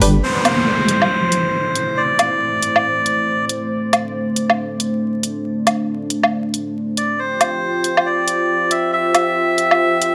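A reedy, breathy melodica carries the melody in this brooding, meditative deep dubstep excerpt, sitting up front with a dub echo trailing its phrases. It drops out at 3.5 seconds and returns at 7.0 seconds for the rest of the clip. Beneath it, a dark analog pad holds sustained chords with a detuned sawtooth character, a sub octave, a slow attack and long release, all thickened by chorus. The harmony moves to an F5 chord at 7.2 seconds. Electronic hi-hat and woodblock give a layered, tape-tinged pulse in a swung, half-time feel, while an electronic downlifter sweeps through the opening seconds. The recording sounds dry and gritty, with light reverb and a bed of vinyl crackle.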